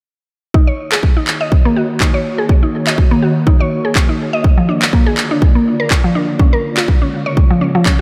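Driving afro house at 123 BPM, with a light 16th-note swing and a warm, dreamy feel, heard as a short cut from a longer piece. A punchy, tape-warm electronic kick sits up front from 0.5 seconds, joined at 0.9 seconds by layered electronic handclaps that share its small-room character. A woody, round, mallet-like synth pluck plays arpeggios up front, its fast attack and short decay given body by chorus, tape echo and sidechain pumping. Beneath it, an ethereal, airy pad enters at 1.2 seconds with slow-blooming sustained chords, its detuned unison layers and ensemble chorus breathing with the sidechain. The harmony moves from Ebm7 to Bb and then Db, and the whole mix is bathed in a moderate church reverb that gives it a soft, hazy depth.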